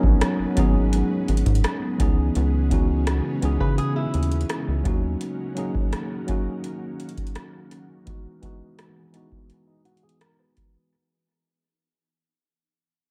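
A booming analog drum machine sets a straight 84 BPM groove in 4/4, its deep kick, metallic hats and rim click sounding as if re-recorded in a large room, while a rubbery, bouncy square bass sits up front until 5.2 seconds. Over this contemporary R&B fragment, a worn, slightly out-of-tune tine electric piano carries the accompaniment through filtering and analog delay, and an ethereal, airy pad holds sustained chords with ensemble chorus, built-in reverb and sidechain pumping, moving from G#m11 through C#m7 and D#m7 to Emaj7. A warm, fingerpicked flamenco guitar adds brief arpeggios at 3.6 and 9.7 seconds, and the whole echo-heavy digital ambience carries a sensual, longing mood beneath a continuous filter sweep and fade-out.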